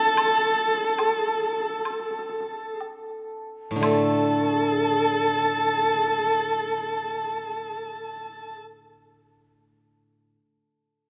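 Tender and wistful, this short cut from a longer Chinese traditional chamber piece drifts in a rubato 4/4 at 58-77 BPM, slowing through its first 3.8 seconds as a warm, up-front erhu sings the melody with vibrato and portamento over a husky horsehead fiddle, a reedy bamboo dizi with a buzzing membrane set in the background, a shimmering hammered dulcimer and a close, dry woodblock, before a bright, silvery steel-string zither played with fingerpicks enters at 3.7 seconds and rings on past the others to 10.4 seconds, all bathed in a moderate concert hall reverb.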